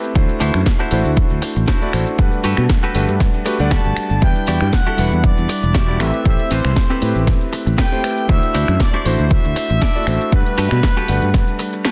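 A swung 118 BPM nu-disco groove in 4/4 sets a sensual, sleek mood, with a punchy, up-front electronic kick and growly, tube-saturated fingered bass driving under a tape-warm house kit of cracking snare, finger snaps, hi-hat and shaker, while a clangy vintage electric grand piano pumps with sidechain and delay through D9, Gmaj9, Em9 and Am9 chords, a clean, chorus-lush semi-hollow guitar riff shimmers alongside, and a tight, bright trumpet section with light vibrato and tape echo enters on the melody at 3.7 seconds in this dense, dry, heavily limited excerpt from a longer piece.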